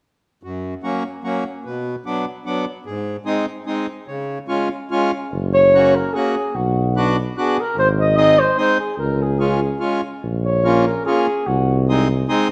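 Bouncy and festive, this alpine folk excerpt in F# major moves at 147 BPM in a swung, rubato 3/4, opening with a reedy, hollow accordion alone before a mellow tuba joins on the bass line at 5.3 seconds. A classical-style flugelhorn, mellow with light vibrato yet distant and roomy in tone, carries the melody from 5.5 seconds, sitting above the dark, smooth accordion and the tuba's mellow, smooth-topped low end. Light reverb frames the three up-front parts as the chords cycle through F#, Bm, G# and C#, closing on A#m and G#/B#.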